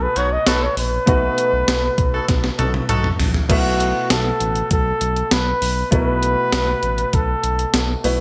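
A straight 4/4 groove from a thumpy, up-front 80s digital drum machine with gated-reverb snare, tambourine and a drum fill at 2.3 seconds drives this nostalgic, uplifting 1980s-style pop excerpt, where a breathy, intimate flugelhorn carries the melody over a polished baby grand piano with subtle chorus, a dark gliding synth bass, and punchy horn-section stabs with delay that stop at 3.1 seconds, set in a bright digital plate ambience.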